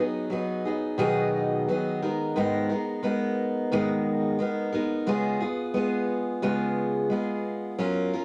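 A picked steel-string acoustic guitar plays alone from the start, carrying this short, sunny and heartfelt pop fragment cut from a longer piece. The tempo sits at 88 BPM in 4/4 with a gentle 60% swing on the sixteenths, giving the line an easy lilt. The guitar sounds up front and warm, with an auditorium-sized resonance and the soft grain of cassette tape, ranging from G#2 to A#4. The harmony moves from B6 to G#madd9 at 2.0 seconds and on to C#7 at 5.1 seconds, a tender, hopeful progression. Moderate spring reverb and a small-room ambience frame the homespun cassette recording, which lasts about 8.2 seconds.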